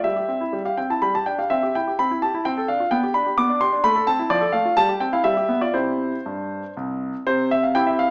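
Cheerful and elegant, this brief cut from a longer classical-period piano sonatina in C major sets a bright concert grand alone in 3/4 at a rubato 115-132 BPM, its brilliant, up-front tone reaching from deep bass up to D6 with long sustain and audible action noise, framed by a wet recital hall reverb yet heard through a small speaker sound, as the harmony moves from C/G through Dm7/C, Am and G7 to settle on C near 5.7 seconds.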